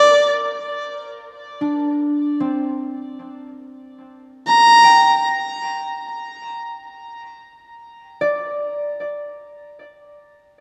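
A rich, focused electric violin plays a brief phrase with vibrato at the very start, then a bright, ringing concert harp fades in from 1.6 seconds with fingerpicked arpeggios over a sustained Csus2 harmony. The bowed violin returns briefly around 4.5 seconds, both parts carrying tape echo and sitting up front in a lush, wet hall. In free time, this weightless ambient fragment from a longer piece drifts until the harp stops at 10.1 seconds.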